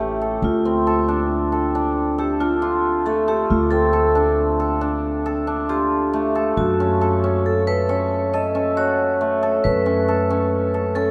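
Shimmering, hammered cimbalom arpeggios sit up front from the start alongside a ringing, close-miked vibraphone playing a dry, full second line with its motor off, and a woody, thumpy pizzicato upright bass on steel strings underneath. This hypnotic, pensive piece of contemporary chamber music moves in 7/4 at 137 BPM in D dorian, set in a vast, echoing cathedral-like space. The harmony rests on D minor before shifting to F-sharp minor at 6.6 seconds in this fragment cut from a longer work.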